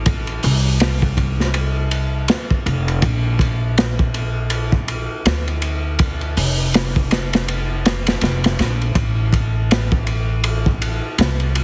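A plucked upright bass opens this smoky, brooding trip hop excerpt, its woody, thumpy gut-string tone sitting low in the register. At 0.1 s a crunchy breakbeat drum kit joins and stays up front, with a tight kick, a medium-tuned snare, hi-hat and dark ride cymbal. The kit sounds saturated and gritty yet smooth, recorded in a small room with a rolled-off top. The groove moves at a relaxed 81 BPM in 4/4 with a lazy 16th-note swing, rooted in A phrygian and tuned slightly sharp at A4 = 441 Hz. The sound is dry and heavily compressed, giving the whole mix a boxy, radio-like squeeze. A new section arrives at 9.0 s and carries on until the cut at 11.6 s.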